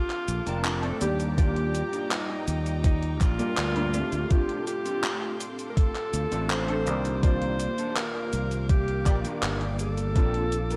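A straight 82 BPM groove in 4/4 is set by a thumpy, overdriven electronic kick up front, entering at 1.4 seconds, and a gated drum machine of cabasa, handclaps and hi-hat, with a growly, overdriven fingered bass carrying the low end over chords moving from Bbmaj7 through Ebmaj7, Dm7 and Cm11. In this faded, woozy vaporwave fragment cut from a longer piece, warbly, nostalgic lo-fi synth keys with ensemble chorus and detuned ring-modulated tones sit beside a lush symphonic string section in the background and a dark electric guitar riff at the edge of break-up with subtle chorus. A clear, close-miked alto saxophone sings the jazz-style melody with vibrato and tape echo, all wrapped in light reverb and a cassette-tape sound.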